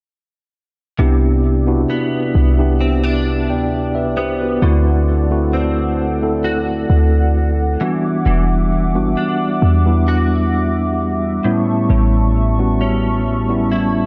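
R&B at a slow 66 BPM in a late-night, longing mood, this excerpt sets a mellow tine electric piano up front over a deep, boomy 808-style bass, with a hollow, flute-like pad washed in chorus holding sustained chords and a bright, direct-recorded clean electric guitar picking arpeggios through an ensemble chorus, all moving through Cmaj9, D7, Em9 and A7 in a dark production with light digital reverb.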